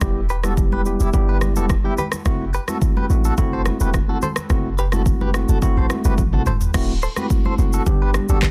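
A boomy, sine-deep 808-style bass sits up front in this sultry, hypnotic afrobeats excerpt at 107 BPM, alongside an electronic afro-pop kit with a deep kick, handclaps, rim click, shaker, toms, crash and softly clipped snare, a clean tine electric piano through a combo amp outlining Em and F#m7b5, a bright, twangy direct guitar riff with tremolo and delay from 0.3 seconds, and high-tuned, ringing congas in the background, before a drum fill at 6.2 seconds leads to a shift onto D7 and G in a dry, dense, heavily limited mix.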